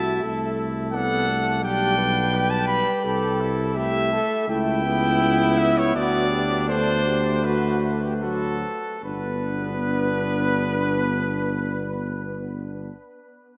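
In a rubato 4/4 at around 74-86 BPM, this stately classical brass quintet passage in G major slows from 1.6 s to 9.0 s before settling on a G chord at 9.0 s. A dark trumpet with vibrato carries the melody up front, while a mellow, punchy second trumpet sits further back. A clear, soft-attacked French horn and a background trombone with vibrato fill out the accompaniment, and a tuba with a smooth top and light vibrato anchors the bass up front. The quintet rings in a vast, echoing cathedral with a long, wet reverb, and the passage is cut from a longer work.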